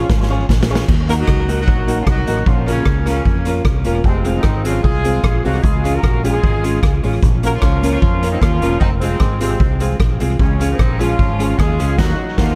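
Driving, energetic ska at 151 BPM in Eb dorian, where a warm, vibrato-rich horn section carries the tight, octave-doubled melody with tape echo from the very first moment while a drum fill kicks off the cut, all over a dark, round fingered electric bass, a clean semi-hollow electric guitar and jangly, metallic tack piano stabs tucked behind, while the up-front street-band kit with boomy kick and dark cymbals drives through chords moving from Ebm to Bbm, Fm and Db in a dry mix, ending on a band accent at 12.0 seconds.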